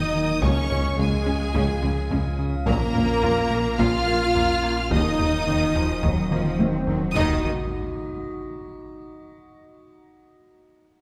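A brooding, relentless passage from a hybrid orchestral and electronic film score in Eb minor at 107 BPM opens with a clear, focused violin melody over a smooth second violin line and background violas. Beneath them, a dark, distant French horn section holds chords, an eerie metallic FM drone with chorus and its own reverb sustains, a very quiet tight sawtooth arpeggio runs, a mellow ring-modulated synth bass plays a riff, and a deep sine sub bass anchors the low end. At 0.4 seconds lush double basses, cellos and a distant taiko ensemble struck with hard sticks join as the chords move from Db through Bbm to Ebm in a wet scoring-stage reverb, and a drum fill and electronic swell lead to an impact at 7.2 seconds that rings on to the end.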